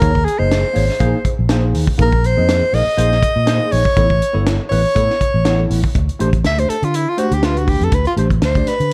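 A tight, driving groove at 121 BPM in 4/4 anchors this short, funky electric jazz fusion excerpt, its 16ths lightly swung. The acoustic funk drum kit sounds natural in a small room, with a high-tuned snare, a tight kick and hi-hat. A fingered electric bass sits up front, dark, round and punchy with an amped tone. A worn tine electric piano, slightly out of tune and heard through its built-in speakers, carries the accompaniment with light overdrive and a phaser. Over the harmony moving from Ab9sus4 and Bb9sus4 to A and then a D7 omitting its third, a clear, close-miked soprano saxophone leads in jazz style with light vibrato, subtone and scooped notes, stepping into a solo at 5.9 seconds. Light reverb and a small room ambience frame the whole performance.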